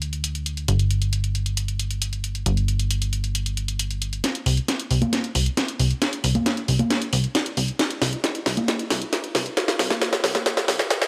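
A straight 4/4 pulse at 135 BPM drives this uplifting trance clip, cut from a longer piece, with a driving, soaring mood. A layered electronic house drum kit of congas, hi-hat and a cracking snare sits up front, its tape-warm tone carrying the character of a re-recording in a small room. Alongside it, a plucky analog bass built from sawtooth and pulse waves moves between G1 and D2, punchy and funky, with a fast-attack filter pluck and a decaying tone thickened by tube saturation. From 4.2 seconds the music shifts into a build-up marked by a drum fill that runs to the end, while the bass stops at 10.8 seconds. The mix sits in a moderate, lush hall reverb with a 1.8-second tail and passes through a high-pass filter.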